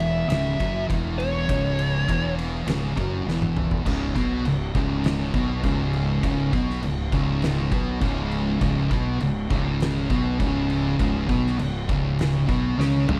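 This sludgy, ominous stretch of stoner and doom metal, cut from a longer piece, moves at 101 BPM in a straight 4/4 and opens on a C#m chord with the full band sounding at once. Up front, a compressed fuzz lead guitar plays a short picked melody between C#5 and E5, colored by wah, distortion and slapback echo, before it drops out at 2.3 s. Beneath it, two thick fuzz guitars grind through distorted, picked riffs from the background, one dark and the other warm, while a round, overdriven fuzz fingered electric bass sits up front with a direct-and-amped growl. The oversized low-tuned acoustic drum kit rings through a bright stone room with a pumping character, pairing a punchy kick and fat snare with crash, ride and toms, and it plays fills at 3.3 s and again near the end. At 3.9 s the harmony shifts to Bsus2/C#, and a small room ambience surrounds the heavy ensemble.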